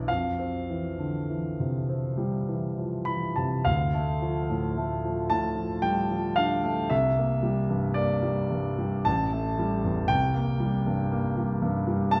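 A clear concert grand piano opens on an Fsus2 sonority, playing alone through this short, luminous and hazy passage of impressionist classical piano, cut from a longer piece. The pace is slow and unhurried, around 49-60 BPM in 3/4, with a free rubato feel that lets each phrase breathe. The piano sits up front and sounds natural, with a deep bass and long sustain, and its writing ranges from A1 up to B5. The harmony drifts from the opening Fsus2 to D minor at 3.7 seconds, where a new section begins, then on through C9 and A5 before settling toward a C7 colour near the close at 12.2 seconds. A wet recital-hall reverb, the sound of a church or concert hall, surrounds the instrument and deepens the passage's softly blurred, glowing atmosphere.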